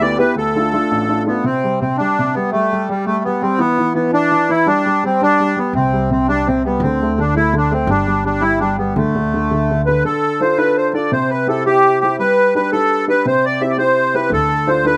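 A reedy, sweet accordion with light tremolo tuning carries the melody up front in this driving, wild Celtic folk jig in 6/8, its boxy small-room tone set against a polished, present grand piano accompaniment with slapback echo. A woody, pizzicato upright bass on steel strings enters at 5.7 seconds, drops out at 10.0 seconds and returns at 14.3 seconds, under chords that move through Dm, Csus2, C5, D5, G5, C and G. The outdoor recording carries light reverb, and the clip is cut from a longer piece.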